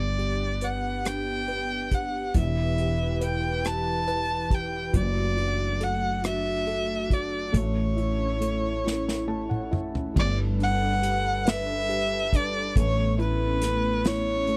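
The recording is dry and close, with a 1970s studio intimacy that puts the violin and drums up front. This romantic, heartfelt pop ballad moves in a straight six-eight and is taken from a longer piece. A single bowed violin carries the melody with a focused tone, vibrato and a smooth top. A felt-muted upright piano adds soft, mellow accompaniment, its thick felt and audible action noise lending an intimate quality, while an airy, breathy pad with a slow attack and chorus holds sustained chords beneath. A woody fretless electric bass, round and hollow-bodied with lush chorus, anchors the low end, and the acoustic kit, played with bundle sticks, pairs a punchy kick and medium-tuned snare with dark cymbals. From 8.8 seconds the drums and piano both play fills, leading into a new section at 10.2 seconds where the harmony moves to added-ninth chords.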